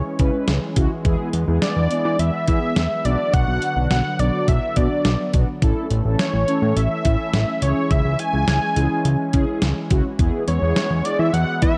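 A detuned 8-bit digital drum machine sets a straight 4/4 pulse at 105 BPM in this driving, nocturnal synth-pop excerpt, its thumpy kick, medium-tuned snare and hi-hat sounding sampler-like and tape-colored, as if re-recorded in a small room, and sitting up front. Beneath it, a fat analog bass of detuned sawtooth and square waves, saturated and moving through a filter sweep, fills the low end from A1 to E3. The unison lead carries the melody between C#5 and G#5 with a bold, thick sawtooth-and-triangle tone, a sub octave and vibrato. Mellow synth brass arrives at 0.2 s with a round, evolving accompaniment shaded by chorus, phaser and vibrato, while a lush, airy unison pad with a noise layer and slow attack sustains harmony in the background. The chords move through C#m, E, Bm and A, and light reverb with a dark, warm production wraps the track in a late-night glow.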